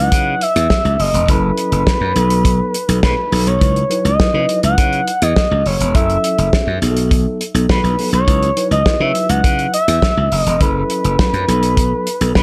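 A smooth, dark sawtooth synth lead with chorus and vibrato sings an expressive, up-front melody over a clean, mellow tine electric piano and a bright, growly, punchy slap bass, joined at 0.1 seconds by a damped, dry 70s drum kit with a tight kick, a medium-tuned snare and gated reverb, in this slick, funky early-eighties boogie funk excerpt cycling through C#m11, F#m7 and B7 in a small room.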